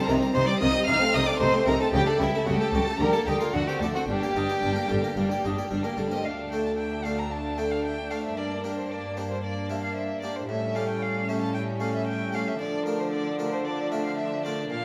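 A lone violin sits up front, singing the melody with vibrato, sliding portamento and an expressive, slightly distant tone in this stormy, dramatic excerpt from a baroque-style concerto movement with solo episodes. Behind it, a chamber violin section also carries the melody higher up in a warm, bowed background. A second violin section carries a smooth, even inner line. A viola section in the background adds rich, smooth accompaniment, while a bright Flemish-style harpsichord fills out the harmony with plucked chords. Cellos provide a soft-attacked, gliding bass throughout, and a double bass section deepens it until 6.1 s, just before the music turns to a new section at 6.2 s. The wet recital-hall reverb gives the whole ensemble a spacious, resonant glow.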